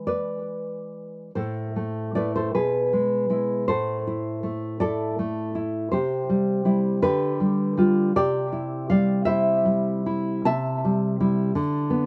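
This romantic solo classical guitar fragment in A minor moves at a nostalgic 53 BPM in 6/8, its uneven beats pulled about with rubato. The nylon-string guitar sits up front, dark and full-bodied, with thumb-plucked notes ranging from A2 to A5 and audible finger squeak. Recorded outdoors with little reverb, it opens on an E chord before settling into A minor at 1.4 seconds, then turns through C and G7/D to close on Dsus2 at 11.6 seconds.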